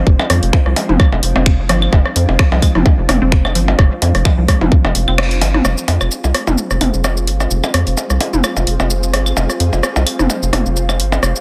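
A rubbery, hollow square bass and an airy, breathy pad with chorus open this clinical, sparse minimal techno fragment in F dorian at 129 BPM, both pumping against the sidechain, with a flickering, grainy texture hovering very quietly in the mix and a light reverb around it all. A tight, layered electronic kick sits up front alongside a minimal click kit of claves, blips, rim clicks and toms with dub echo, while a tape-warm analog drum machine adds snaps, hi-hat and shaker, all swung at 55% on the 16ths. A juicy, squelchy blip pluck with phaser and delay plays in the background until 5.4 seconds, after the kick stops at 4.8 seconds and a band accent lands at 5.2 seconds ahead of the second section.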